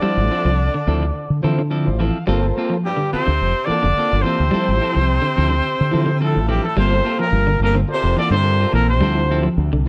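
An afrobeat groove opens at once at 107 BPM in G dorian, driving and hypnotic, with a breathy trumpet carrying the melody up front over a round, punchy fingered electric bass. Behind the trumpet, a bright alto saxophone and a distant, roomy baritone saxophone with analog delay play second lines, both set back in the mix. A clean electric guitar with tremolo picks arpeggios in the background, while a hollow-body semi-hollow electric guitar adds clean stabs through analog delay. A mellow combo organ with heavy vibrato supplies vintage-toned accompaniment and slips in a brief fill between 1.4 and 2.3 seconds. The harmony alternates between Dm9 and Gm11, and the horns drop out at about 9.4 seconds as the rhythm section carries this cut from a longer piece to its close under light studio reverb.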